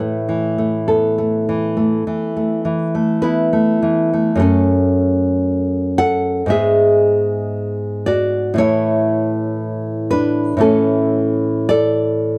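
An A5 chord on solo nylon-string guitar begins this tender, romantic classical piece, fingerpicked with a free, rubato feel in 4/4. At 4.4 seconds a new section moves from F#m through E/G# to A, the guitar ranging from F#2 up to F#5 with a full-bodied, deep tone. The warm playing sits up front in a modest booth ambience, cut from a longer work and stopping at 12.4 seconds.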